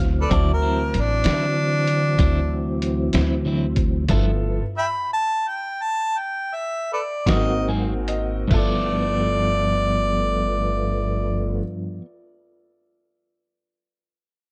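Slow blues in 12/8 with a rollicking, swaggering feel, led by a mellow, distant jazz-style harmonica with tongue slaps and scooped notes over woody pizzicato upright bass, a bright upright piano in the background, clean tonewheel organ chords through chorus vibrato and a slow rotary speaker, slightly broken-up picked electric guitar with tremolo, and a muffled, pitched-down lo-fi sampler-style drum kit that drops out at 8.7 s, as the band slows into a stop broken by a piano fill at 7.3 s, all set in a dark, warm production with light reverb.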